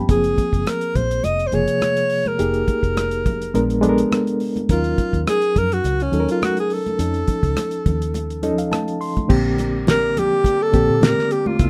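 Smooth and bittersweet, this short excerpt of lush 1970s-style soul moves at 104 BPM with a light sixteenth-note swing, as a clear, vibrato-laden alto saxophone carries the melody over reedy electric piano with fast tremolo (which plays a fill from 8.1 seconds), round foam-muted fingered bass, a cloth-damped, thuddy drum kit with a fat snare and dark cymbals, soft-handed high-tuned congas in the background, and a tonewheel organ with key click and slow rotary speaker that joins at 9.3 seconds, all in a rough home demo mix with light reverb over lush chords such as Gbmaj9#11 and Bb7b9.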